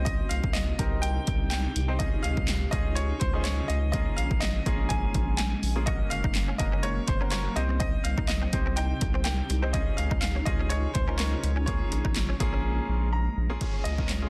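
Dance-pop at 124 BPM in a straight 4/4, confident yet bittersweet, cut from a longer piece and moving through Cm, Dbadd9 and Bbm7 with a turn to Gb and a closing Db. A bright grand piano with audible action noise carries the melody from C5 to Ab5, while a clear concert grand with deep bass and short sustain plays accompaniment, pumping under sidechain compression. Up front, a punchy analog drum machine re-recorded in a large room drives kick, snare, hi-hat and handclaps, joined by a thick, saturated sine sub bass that also pumps, as does the cloudy, evolving granular pad drifting in the background with its own reverb. A twangy, scooped clean electric guitar with ensemble chorus adds a quiet riff from 5.9 to 12.6 seconds, after which a silent gap opens and the grand piano plays a brief fill. At 13.6 seconds a very quiet, round pluck spins arpeggios over an electronic downlifter, all within a dense, heavily limited modern master that shows lossy compression artefacts.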